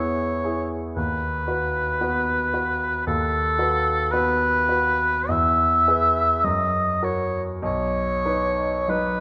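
This is a romantic classical duo for oboe and grand piano, a lyrical and serene fragment cut from a longer piece and lasting about 9.2 seconds. It moves slowly at 48-58 BPM in 4/4 with a flexible rubato feel, in B major, tuned to A4 = 438 Hz. The warm oboe carries the melody between A4 and E5 with a light vibrato, sounding up front yet somewhat distant and roomy. The concert grand piano accompanies from B1 to B4 in a clear, polished voice with deep bass. The harmony moves from E to B/D#, back to E at 5.3 seconds, then to F# and settles on B at 7.6 seconds. A wet scoring-stage reverb with a 2.0 second decay surrounds the duo.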